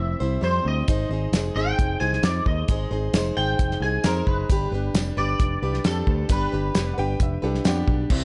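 A twangy, clean electric guitar carries the melody through ensemble chorus in this nostalgic, jangly folk-rock and heartland-rock excerpt, over a picked plugged-in steel-string acoustic guitar with audible finger squeak, an up-front picked electric bass and a cloth-damped, thuddy drum kit with dark cymbals that enters at 0.9 seconds, while a close, jingly tambourine sits in the background and a woody, slightly detuned upright piano with tape echo adds a second line from 6.9 seconds, within a dark small-room production.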